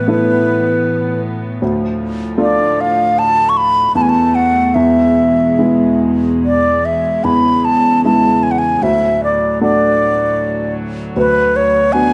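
A breathy, bright baroque flute carries the melody up front, its wooden straight tone and soft attack heard close to the microphone as it sings between B4 and C#6. This Celtic slow air, cut from a longer piece, moves at a rubato 77 BPM in 3/4 with a tender, wistful mood, tuned to A4 = 443 Hz. An upright piano accompanies throughout, intimate and woody, with audible action noise lending it a natural presence up front alongside the flute. Further back, a studio string section holds sustained chords played sul tasto, its bowed ensemble sound pure, floating and distant beneath the other two. The harmony drifts from Asus2 through Dm, Esus4 and E before settling toward D and a closing Bm/D around 11.2 seconds. A moderate recital hall reverb surrounds the trio, and the top end is gently rolled off, keeping the whole sound soft-edged.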